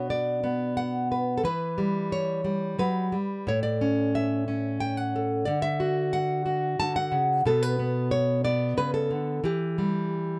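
A bright, fingerpicked nylon-string guitar plays alone and up front for the whole 10.4 seconds, giving a peaceful, classical-leaning folk feel in a rubato 3/4 at around 90 BPM as it moves from Bm through Em, A and D back to Bm and Em, with finger squeaks caught by a dry, close 1970s-style studio sound with light reverb, in a short excerpt cut from a longer piece.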